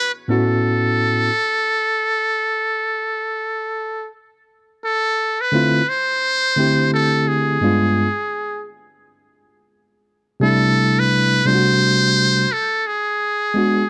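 A dry, close recording with a 1970s studio character places both instruments up front. This smooth, warm hip hop excerpt moves with a laid-back swing in four. A trumpet with a metal mute carries the solo melody in a jazz style, its tone brilliant yet thin and buzzy, with a breathy edge, soft attacks, a smooth top and a light vibrato. A clean tine electric piano, heard through its built-in speakers, supplies the accompaniment, touching in only briefly at the very start before returning at 5.5 seconds to support the rest of the passage. The harmony drifts through jazzy colours such as A6, G7b9 and C6, with a second section beginning at 4.8 seconds, and the fragment ends on a G#m7b5 chord as though cut from a longer piece.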